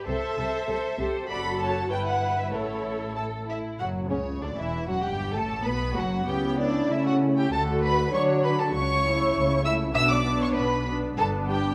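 A muted violin section playing a second line and a muted viola section playing accompaniment open this graceful, lively classical-period movement for string orchestra in a brisk 2/4. Within a moment, a higher violin section takes the melody, while muted cellos and double basses supply the bass beneath. Every section plays con sordino with vibrato, giving the ensemble a dark, veiled chamber sound, and a moderate recital hall reverb adds gentle space around it. The opening passage runs to about 3.8 seconds, and a longer second passage follows, with the harmony moving through a Gmaj9 and a B minor chord before settling on G. All five parts play through to 11.7 seconds, where this cut from a longer piece ends.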